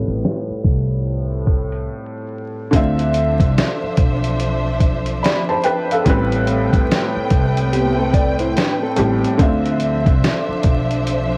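Melancholic and reflective, this lo-fi hip hop excerpt sets a felt-muted upright piano with audible action noise and a woody, gut-strung pizzicato upright bass against a thumpy, pitched-down sampler-style drum kit, all in a swung 4/4 with a filter sweep and a brief break before 2.7 seconds. From there a distant, lush string section with portamento adds sustained chords over the shift between Am9 and Dm9, and a dark, clean fingered electric guitar with analog delay appears briefly from 7.7 to 9.4 seconds. The home cassette recording carries vinyl crackle and a low-pass filter, with tape colouring the piano, drums, strings and guitar.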